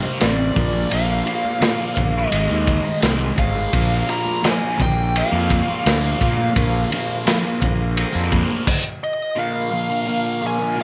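A thick, double-tracked fuzz guitar riff opens this mysterious, hypnotic psychedelic rock excerpt, colored by phaser and set up front over a very quiet, mellow combo organ holding sustained chords with light vibrato, while ringing, high-tuned congas sit very quietly in the mix. Almost at once a fuzz lead guitar adds a melody high up, compressed and touched with slapback echo, as an overdriven fingered bass and a crunchy, saturated breakbeat drum kit with dark cymbals and a tight kick push forward at 85 BPM in a straight 4/4. The harmony circles through Cm7, Bb7 and Abmaj7, giving the groove a brooding, trance-like pull. The bass falls away at 8.4 seconds, and the congas and drums drop out around a stop beginning at 8.7 seconds, leaving the guitars and organ hanging. A brief closing section settles on Bb from 9.4 seconds, all of it washed in a moderate spring reverb.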